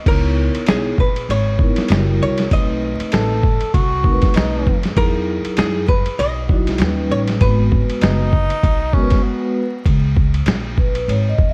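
A gritty, thumpy sampler-style drum kit sits up front in this mellow, nocturnal jazz-hop excerpt, joined by woody pizzicato upright bass, a ringing soft-mallet vibraphone with slow motor vibrato, a clean hollow-body archtop guitar melody with analog delay, and a breathy subtone tenor saxophone line with scooped notes from 3.1 seconds, all under light reverb and vinyl crackle in a dark production, until a break at 9.2 seconds gives way to a vibraphone solo at 9.9 seconds.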